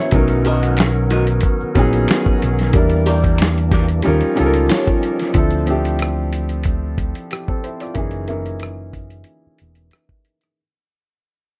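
R&B and neo-soul at 92 BPM with a light 16th-note swing, soulful and introspective, this short cut from a longer piece sits on a dusty, gritty, compressed sampler-style drum kit with a thumpy kick and medium-tuned snare, alongside a round, punchy fingered electric bass, both up front. A woody upright piano with long sustain carries the accompaniment through a low-pass filter. Behind it a fat, lightly overdriven tonewheel organ with key click and slow rotary speaker holds chords, a tube shaker and finger snaps add close percussion, and a slightly broken-up electric guitar through a small old amp plays a phased second line until about 4.9 seconds. From 5.3 seconds the organ and shakers stop, a filter sweep runs over the piano and the track fades out under light reverb in a dark production.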